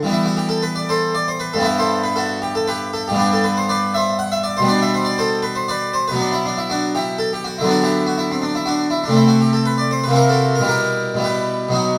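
A brilliant, full-bodied French-style harpsichord with three sets of strings plays alone, close-miked and up front in a moderate recital hall, through a grave yet flowing baroque-style suite movement in 3/4 whose rubato phrasing carries it from the start to the end of this 12-second excerpt.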